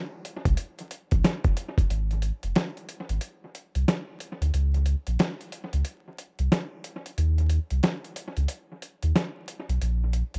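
A boom-bap hip-hop groove in 4/4 with a lazy swing on the sixteenths opens this short clip of a longer piece, its mood confident and warm. A dusty, sampler-style soul drum kit of hi-hat, kick and snare enters at 0.2 seconds, gritty and tape-warm, with a thumpy kick and a medium-tuned snare sitting up front, compressed and touched by analog delay. A deep sine sub bass joins at 0.5 seconds, round and mellow with a fast attack and long sustain, holding the low end from F1 to D#2. At 1.9 seconds the kick drops away, leaving the hi-hat and snare riding over the bass through to the end. The mix is dry but echo-heavy, dulled at the top and dusted with vinyl crackle for a lo-fi, crate-dug character.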